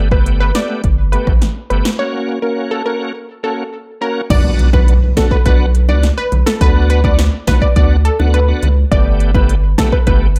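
A straight 4/4 dancehall groove at 104 BPM in B minor, built on an up-front deep house drum kit with a punchy kick and snare, smooth hi-hats, rim clicks and crash cymbal, carries this hypnotic, sultry fragment, where a round sine sub bass sits deep underneath, a bright, shouting tonewheel organ with light overdrive, chorus vibrato and a slow rotary speaker moves through Gadd9 and F#, and a detuned sawtooth pluck with a noise layer, filter sweep, chorus and tape echo carries the melody, until after a break from 2.0 s a very quiet electronic impact and soft, low-tuned acoustic bongos arrive at 4.3 s as the harmony turns to Bm in a light reverb.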